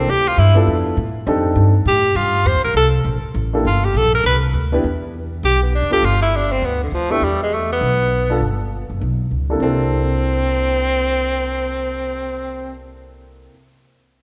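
Sophisticated and playful, this brisk small-group swing and bop passage moves at 201 BPM in 4/4 with swung eighth notes, centred on C mixolydian. A bright, punchy tenor saxophone carries the melody up front, playing a forceful jazz-style solo with vibrato from D3 to C5 before falling away at 12.8 seconds. Beneath it, a mellow, smooth grand piano with a dark, vintage tone supplies the accompaniment, while a woody, thumpy upright bass on gut strings plays pizzicato lines close to the listener; both continue until 13.5 seconds. The harmony opens on rich dominant chords, G13, F13 and C13, then turns to starker E5 and G5 sounds before returning to C13 at 9.6 seconds. A moderate concert-hall reverb gives the group a spacious, live ambience, and the recording is cut from a longer piece.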